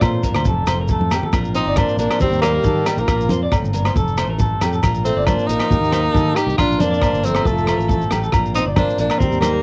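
A bright, up-front tenor saxophone with vibrato and scooped notes carries the melody from 1.6 s alongside a dark, distant subtone alto saxophone on a second line, in this danceable highlife guitar band fragment cut from a longer piece, where a twangy, slightly broken-up electric guitar through a small old amp plays arpeggios with analog delay over a full-bodied fingerpicked steel-string acoustic guitar in the background, a punchy fingered electric bass, a gritty, saturated breakbeat drum kit of hi-hat, tight kick and rim click with a drum fill at 0.9 s, ringing agogo bells, a grainy shekere and very quiet damped congas, all captured as a home cassette recording with light reverb.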